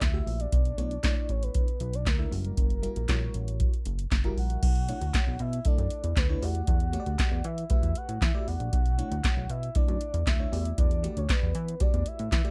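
A dry analog drum machine sits up front in this slick, late-night slice of early-eighties boogie funk, its deep kick, punchy snare, metallic hats, handclaps and crash driving a straight groove under a glossy, saturated synth bass built from pulse and sawtooth tones with a quick filter pluck and chorus. A soft, round octave-layered synth lead carries the melody with chorus, tremolo and vibrato, while a mellow FM electric piano with tremolo and phaser enters at 0.1 seconds to fill in the harmony. Minor eleventh chords move through a brief turn to an altered dominant before the second section begins at 4.6 seconds, all in a dry room.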